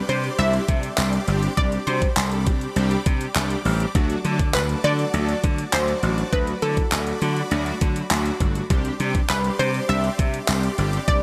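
Energetic yet bittersweet, this dance-pop excerpt at 101 BPM in 4/4 pairs a round, warbling analog pluck melody with chorus and digital delay over a fat, detuned polysynth and huge, lush supersaw chords that pump with the sidechain, driven by a punchy, up-front slap bass, an overdriven pop drum kit with knocking kick, handclaps and gated reverb, and a very quiet, jingly tambourine entering at 1.0 seconds, all moving from Csus2 to D and back in a bright 1980s-style digital production.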